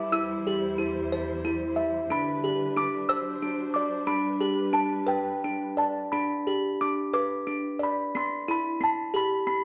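A children's lullaby in rubato 6/8, innocent and sleepy, led by a delicate, tinkling music box melody that sits up front and sounds slightly out of tune. Beneath it, a distant, muted string section holds veiled, lush bowed chords with vibrato until 6.1 s, after which the music box plays alone to 9.6 s. A recital-hall reverb and a dark production surround this short excerpt.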